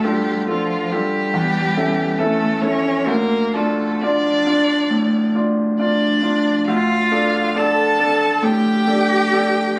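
Caught on a phone in a club-like room with light reverb, this short cut from a longer piece of slow, romantic classical music for piano trio moves at 68 BPM in 4/4 with a rubato feel, settling into D minor from 6.7 s. Up front, a focused, rich violin with vibrato carries the melody over a smooth, vintage-toned grand piano accompaniment. A more distant, expressive cello adds a second line with vibrato and portamento, giving the passage an elegiac, solemn mood.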